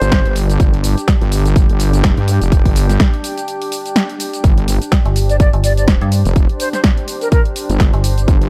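This gritty, aggressive bass house excerpt rides a swung 4/4 groove at 125 BPM, driven by a punchy, tape-warm electronic kick that sits up front from 0.1 seconds. A layered house kit adds a punchy snare, cabasa and warm hi-hats, while a heavy, detuned sawtooth wobble bass, saturated and compressed with chorus, pumps with sidechain compression. Beneath it all, a deep, moody pad holds sustained chords with slow attack, unison detuning and its own reverb, also pumping in time. A jazz flute with airy vibrato and lifted highs voices a brief phrase at the very start, then returns around 5.3 seconds through a digital delay, just after a metallic, overdriven FM bass joins at 5.1 seconds with dark, decaying notes. A short break falls between 3.5 and 4.4 seconds, and the mix stays dry and close.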